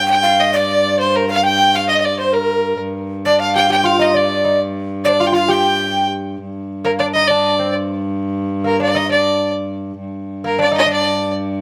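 Medieval fragment in G minor, set in 6/8 at 133 BPM with an ancient, mysterious mood, led up front by an intense, bowed fiddle with light vibrato and slapback echo, joined until 6.1 s by a breathy, chiffy tenor recorder in the background, over a dark, boxy viola da gamba drone on G2, while a bright, delicate fingerpicked lute on doubled gut strings adds a second line from 3.3 s, all in a dry outdoor setting.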